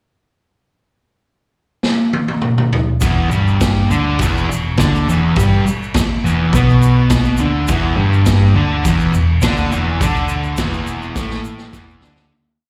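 A straight 4/4 garage stomp groove drives this rowdy, raw garage rock piece, heard as a live gig through a club PA, with a saturated, boomy drum kit of kick, snare, toms and crash rolling in on a fill at 1.8 seconds during the pickup bar. At 3.0 seconds a dark, double-tracked fuzz guitar kicks into an octave riff with slapback echo, doubled by a round, punchy hollow-body bass driving eighth notes in the background, while a grainy tube shaker sits low in the mix. The music fades out from 10.0 seconds, and a final drum fill closes the piece.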